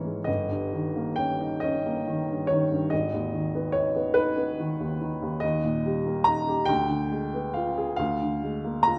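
Heard through a moderate recital-hall reverb, this wistful, melancholic fragment of a romantic nocturne for solo upright piano, woody, natural and up front, drifts in 6/8 at 47 BPM with rubato, spanning G1 to Bb5 and moving from D#7/G and G#m into Eb major at 5.4 s before Ddim7 and Bb7/D at 8.0 s.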